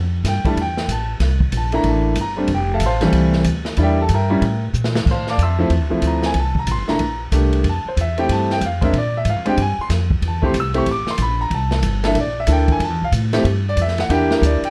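A dark production with light reverb frames this playful, sophisticated slice of small-group swing and bop, moving at 186 BPM in 4/4 with a swung eighth-note feel. Up front, a woody, thumpy pizzicato upright bass on gut strings and a clear concert grand piano with deep lows carry the F major harmony through chords like Fmaj9 and C13, while an acoustic small-room kit adds dark cymbals, a boomy kick and a medium-tuned snare. A drum fill from 4.7 seconds leads into D minor at 5.1 seconds, where the harmony opens on Dm9 and travels through Bb13 and Am7 before returning to Fmaj9.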